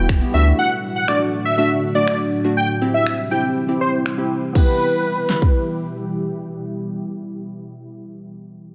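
A straight 4/4 pulse at 121 BPM drives this energetic, bittersweet dance-pop excerpt in E minor, with a punchy, layered electronic pop drum kit sitting up front from 0.1 to 5.5 seconds, its fat snare, kick, finger snaps and crash cymbal carrying a small-room character. A round, deep sine sub bass pumps under the sidechain for just the opening half second, while a crystalline wavetable pluck with chorus and a dark, ethereal pad, softened by ensemble chorus and its own built-in reverb, both pump and run through low-pass filters for the full length. A filter sweep shapes the opening passage as the chords move from D to C before settling on E minor at 4.6 seconds. Above it all, a thick, bold unison lead with vibrato and a wave-folded, bright edge carries the melody from 0.3 to 6.0 seconds, trailed by tape echo. Light reverb gives the mix a gentle sense of space.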